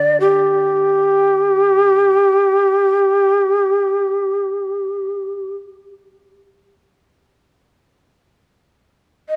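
In free time, this austere, calm excerpt of Japanese chamber music sets a breathy, mellow bamboo shakuhachi up front carrying the melody between G4 and Eb5 with vibrato and a crisp, chiffy attack, while a dry, woody koto played with fingerpicks sounds a low D3 accompaniment only until 2.1 seconds, all within a dark production touched by light reverb.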